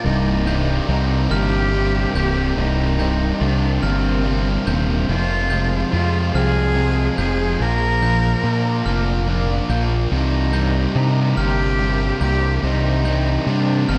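A 6/8 pulse carries this brooding, cathartic post-rock passage, where a bowed cello with smooth vibrato carries the melody through tape echo over two overdriven guitar riffs, one bright and one sludgy in the background, a growling overdriven bass up front, very quiet arpeggios from a slightly broken-up electric guitar, sparkling glockenspiel arpeggios with tape echo, and an ethereal, detuned pad holding sustained chords, in a dreamy mix soaked in hall reverb that moves from Cm7 through Fm and Bb back to Cm7.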